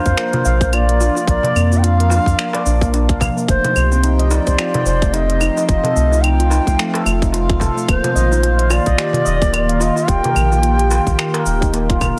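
Warm and meditative, this organic downtempo piece moves at 109 BPM in 4/4 with a swung 16th feel, cut from a longer piece. A bright, airy bass bansuri sings the bamboo-toned melody with vibrato and tongued notes through tape echo, over ringing nitrided-steel handpan arpeggios and a breathy, detuned pad whose chords pump with sidechain, chorus and phaser across Bb, F7 and Ebadd9. A round sine sub bass sits up front, pumping under a tight, overdriven electronic kick and a crisp kit of hats, cabasa, claves and finger snaps with a soft-clipped snare, while a clay-shelled darbuka played with hard hands stays in the background from 0.3 seconds, all in a dense, heavily limited mix with light reverb.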